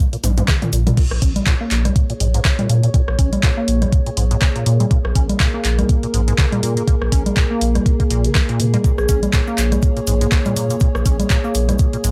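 Gritty and hypnotic, this excerpt of swung acid house at 122 BPM in Bb minor opens with an overdriven analog drum machine fill of congas, toms, handclaps, hi-hat, rim click and crash over a rubbery, resonant acid bass riff with filter sweeps, chorus, 12-bit grit and tape echo. A thick saturated sub bass enters at 0.2 seconds and a thumpy, up-front kick at 0.5 seconds, then the track drops at 1.0 seconds into a moody, detuned pad with a moving notch, all pumping against the kick, while a grainy cabasa sits in the background and a ringing vibraphone note with analog delay glints briefly at 9.0 seconds, the whole mix dry and gritty with transformer saturation and light reverb.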